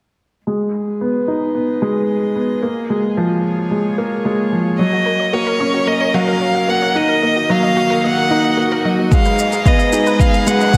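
A string quartet fades in from 0.5 seconds with sustained chords in a reedy, gut-string chamber tone, while a felt-muted upright piano up front plays a mellow, intimate riff through a low-pass filter sweep and analog delay, its action noise audible. This hypnotic, moving piano and strings electronica runs at 111 BPM in 4/4 in G# dorian, cycling through G#m, A#m7, F#6 and D#m. At 4.8 seconds a close solo violin enters up front with an expressive melody coloured by vibrato and portamento. It is joined in the background by a round, detuned sawtooth pluck playing arpeggios with chorus, sidechain pumping and analog delay. From 9.1 seconds a build-up begins as a deep, layered electronic kick drum lands up front alongside a shaker, and a rich symphonic cello section floats in the background on a sul tasto bass line, high-pass filtered and pumping. The dreamy mix is soaked in lush hall reverb, and this passage is cut from a longer piece.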